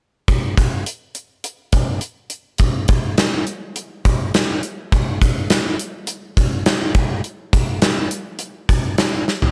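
A bright, airy stone-room sound with light reverb frames this driving, confident rock excerpt at 103 BPM in a straight 4/4, where a polished, gated 80s acoustic drum kit sits up front from 0.3 to 9.5 seconds, its tight kick, medium-tuned snare, hi-hat and toms punching through the gated room before a drum fill at 9.3 seconds.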